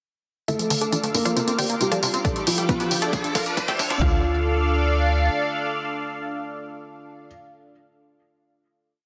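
A short, driving and bittersweet uplifting trance piece opens at 0.5 seconds with a bright, detuned unison pluck playing a repeating sixteenth-note riff in full chords over a pedal note, pumping with sidechain and trailed by digital delay as a filter sweep moves across it through the build. Beside it, a felt-muted upright piano adds a soft, boxy second line in octaves with dub echo, a nasal sequenced synth runs a six-step arpeggio loop that drifts against the bar, and up-front electronic hi-hats and tambourine keep time. A thick, lush unison pad with a sub octave, chorus and phaser enters almost at once on sustained chords, while a punchy off-beat sequencer bass of sawtooth and square tones with a moving notch pulses underneath. From 2.0 seconds a riser climbs in the background, and from 2.2 seconds a tape-warm electronic kick arrives with a drum fill, building the tension until 4.0 seconds. 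Then the drums and arpeggio drop away, and the pad, pluck and piano hold a final minor chord while the bass lingers briefly beneath them. The mix sits in a moderate hall reverb, with a dense, heavily limited modern master.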